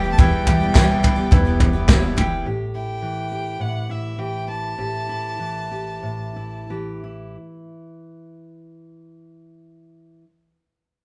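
A straight 4/4 pulse from a soft brush drum kit, with a punchy kick, medium-tuned snare and toms sitting up front, drives this short, nostalgic and anthemic indie folk piece cut from a longer work. For the opening seconds a full live-room band plays over an Em chord: a hollow group handclap and a jingly tambourine sit very quiet beneath it, while a mellow grand piano, a bright picked steel-string guitar with audible finger squeak, and a bowl-back mandolin's double-string arpeggios fill in the accompaniment. A dark, woody fiddle carries the melody with light vibrato and portamento, joined by a distant, expressive cello line in the background, and a pizzicato upright bass stays low and very quiet underneath. At 2.4 seconds the harmony moves to A5 and the arrangement thins as the tempo begins slowing, leaving the fiddle and bass to continue with a full-bodied, fingerpicked dreadnought guitar that enters up front at 2.5 seconds. 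That guitar carries on alone until 10.2 seconds, all within a moderate large studio reverb that gives the ensemble a shared-room feel.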